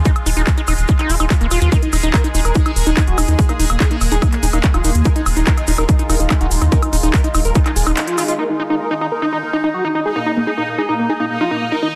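An overdriven, heavy electronic kick sits up front in this hypnotic, alien psychedelic trance excerpt at 144 BPM, joined by a round, deep analog bass with tube saturation, a techno kit of handclaps, smooth hi-hat and woodblock, and a grainy cabasa in the background, before the kick drops out at 8.0 seconds on a band accent. Over this, a screaming, squelchy distorted acid line with dub echo and a filter sweep carries the riff, while a thick, detuned unison lead with phaser and vibrato enters at 1.7 seconds. A bubbling stepped-filter texture holds sustained chords with chorus and sidechain pumping beneath the dense, heavily limited mix.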